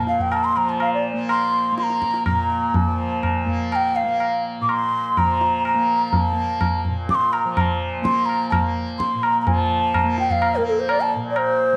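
An airy, hollow bansuri sits up front with vibrato and a crisp attack, carrying the melody from A4 to D6 in this serene, devotional Hindustani classical passage cut from a longer piece. Beneath it a buzzing, shimmering tanpura holds a softly plucked drone from Bb2 to Bb3, while a high-tuned, ringing tabla keeps a straight 7/4 pulse that starts around 125 BPM and gradually speeds up. The recording carries a lush echo-chamber reverb over a studio ambience, and the music moves into a new section at 9.5 seconds before it cuts off at 11.8 seconds.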